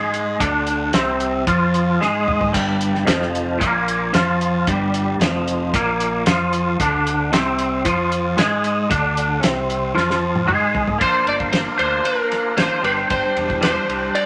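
A wet studio reverb surrounds this trippy, hypnotic psychedelic rock passage in straight 4/4, cut from a longer piece. Up front, a bright, twangy electric guitar plays a clean, compressed riff through a rotary speaker, over a round, overdriven fuzz bass and a cloth-damped acoustic kit with a fat snare, tight kick and dark cymbals that throws in fills at 2.0 and 10.0 seconds, while the chords move between Dm7 and Fsus24. At 11.0 seconds an electric slide guitar, slightly broken-up and played with fingerpicks, enters with a melody as the harmony shifts to Bbadd9 and Gsus4.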